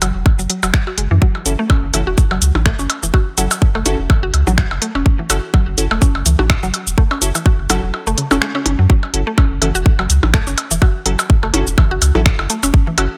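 Minimal techno at 125 BPM in F# minor, this sparse, clinical fragment of a longer piece rides a swung 16th-note feel over a single F#m7 chord. A tight, tape-tinged electronic kick sits up front from 0.3 seconds, backed by a layered drum kit of cabasa, finger snaps and smooth hi-hats that sounds re-recorded in a small room, while produced percussion blips add tape echo. A deep, thick saturated sub bass with a triangle tone and fast attack pumps against the sidechain, sitting prominently under a woody, round, mallet-like FM synth pluck riff that carries chorus, phaser, delay and its own sidechain pumping. From 1.5 seconds a crisp, detuned wavetable chord stab with a wave-folded, filter-plucked edge enters softly through tape echo. The kick drops out at 7.9 seconds, and a drop follows at 8.9 seconds, all set in a digital ambience.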